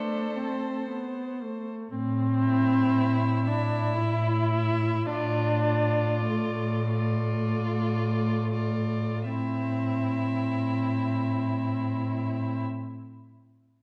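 A muted string quartet opens together in A minor, a slow romantic movement in 3/4 with a solemn, elegiac mood and a flexible rubato pulse between 34 and 59 BPM. The first violin carries a soft-attacked, veiled melody between C5 and E5, while the second violin sits more distant beneath it on a second line. The viola's accompaniment and the cello's bass are up front and fuller in the balance, all four players bowing con sordino with vibrato, the cello's lighter. The harmony moves from A minor to D minor over an A bass at 5.1 seconds and returns to A minor at 9.3 seconds, the tempo slowing from 0.3 seconds until that return. A dark production and a recital hall's lingering reverb wrap the ensemble, and the passage is cut from a longer piece, with all parts stopping at 12.6 seconds.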